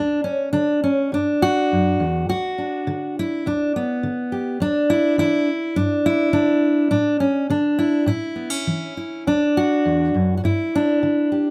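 With light reverb, this gentle, warm folk excerpt features a solo fingerpicked steel-string dreadnought acoustic guitar that sounds full-bodied and up front as it plays in rubato at 103 BPM in 4/4, ranging from D2 to G4 with tuning at A4 = 439 Hz, and moves through G5, G/D, Asus4 and A to D before returning to G5 at 10.4 seconds.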